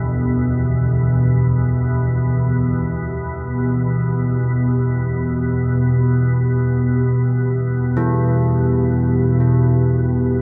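An up-front, organ-like drone of unison sine tones with ensemble chorus and built-in reverb anchors this dark, ominous ambient drone in E minor and free time, while a deep, detuned sawtooth analog pad fades in across the full 10.4 seconds with chorus-thickened sustained chords and bronze carillon bells ring out low arpeggios through delay, the whole mix sitting in a small room with light reverb as part of a longer piece.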